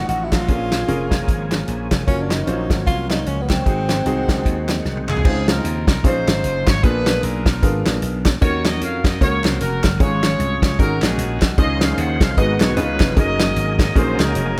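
A swung 4/4 groove at 152 BPM drives this reverent, hopeful uptempo gospel piece in Db major, with a fat-snared, punchy acoustic drum kit up front, a bright, growly slap bass and a very quiet, crisp group handclap. A breathy, intimate tenor saxophone carries the melody at first, then during a drum fill a distant, roomy horn section takes it over at 5.1 seconds, while a clear concert grand piano with deep bass accompanies throughout. A gritty, overdriven tonewheel organ sits in the background with a slow rotary speaker and chorus vibrato, holding sustained chords before dropping out and returning at 11.6 seconds, all in light reverb.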